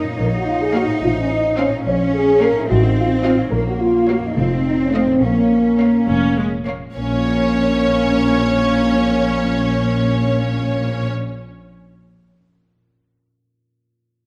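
In a straight 6/8 at 71 BPM, this sneaky, quirky Bb minor film cue excerpt sets a distant, lush violin melody over a second violin line in the background, clear, intense violas, focused cellos and smooth-topped double basses, with ringing harp arpeggios running to 11.9 seconds, a dark, roomy French horn section holding chords from 0.2 seconds, and everything sitting in a moderate scoring-stage reverb as Bbm and F7 alternate.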